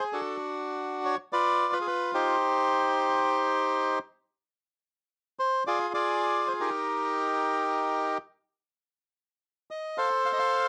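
Close, detailed microphones and a dry room put a solo bandoneon up front, so every reedy, dark note lands with a mid-forward presence. This is a melancholic, dramatic tango in C minor, set at 111 BPM in 4/4 but played with a rubato feel that lets the time breathe. The bandoneon carries the whole 10.7-second excerpt alone, moving between D4 and F5 and tuned to A4 = 443 Hz. Its harmony passes through D, G7 and C minor, then through chordless stretches, Bb13 and E-flat. It settles on a rootless G9sus4 near 10.0 seconds as the fragment, cut from a longer piece, breaks off.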